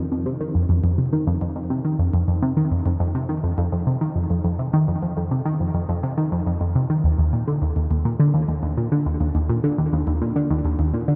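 A tight, driving sequenced synth plays alone from 0.0 to 11.2 s, its nasal, detuned sawtooth tone with a plucked filter and moving notch sitting up front between Eb2 and Eb3, dressed in chorus and delay and bathed in a huge ambient reverb with a 7.0 s decay, giving this dark, expansive and hypnotic ambient fragment at a straight 104 BPM in 4/4 the feel of a passage cut from a longer piece.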